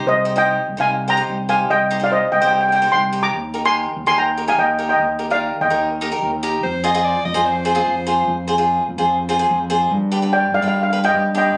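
Captured on a phone in the room yet dressed in studio reverb and compression, with the highs capped at 10.6 kHz, this tense, intense calypso fragment moves through Cm, Eb, Fm and G as a bright, crisply picked cavaquinho plays along up front and an overdriven, round fingered electric bass holds the low end, while a metallic, shimmering steel pan played with medium rubber sticks carries the lead, gives way at 6.6 s to a brief, edgy alto saxophone second line with scooped notes and digital delay, and returns at 10.3 s.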